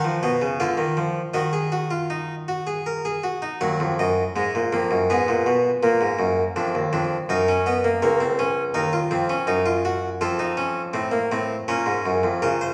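Heard from further back in a reverberant recital hall with a touch of small-room ambience, this short cut from a longer work presents a solo Flemish-style harpsichord whose plucked, nasal, bright tone still sits up front. It is a solemn yet driving baroque-style three-part fugue in Eb minor, moving at 81 BPM in 3/4 and tuned to A4 = 436 Hz, with the keyboard spanning Db2 to F#5. After a brief opening passage, a longer section from 3.6 seconds works through Abm, Bb7 and F7 harmonies before coming to rest on Bbm.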